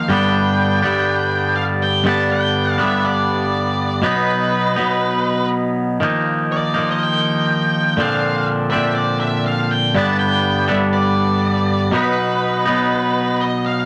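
A straight 4/4 rock groove at 122 BPM in G mixolydian carries this kaleidoscopic, trippy passage cut from a longer piece, where a bright, clean, compressed twangy electric guitar plays a picked riff up front while a dark octave-fuzz lead guitar carries the picked, distorted melody above it, both running through chords that wander from G to B, Ebsus2 and Bbadd9, all set in a rough rehearsal-room recording with tube saturation and a moderate stone room reverb.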